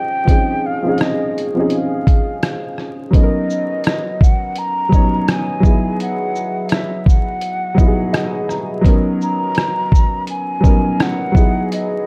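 A breathy concert flute and a worn, woody upright piano open this cosy, nostalgic lo-fi hip hop excerpt together, both softened by a low-pass filter. The flute carries the melody in a mellow upper register with gentle vibrato and tongued notes. The slightly detuned piano sits up front, accompanying with lush major-ninth chords in B major that move from C#maj9 through Bmaj9 and Emaj9. At 0.3 seconds a sampler-style drum kit joins at a relaxed 84 BPM with a swung sixteenth-note feel: hi-hat, rim click, shaker and a thumpy kick, all compressed, pitched down and muffled, yet placed up front with the sound of a large room. The piano steps forward with a brief fill at 7.8 seconds, while dark, warm digital ambience and vinyl crackle surround the whole mix.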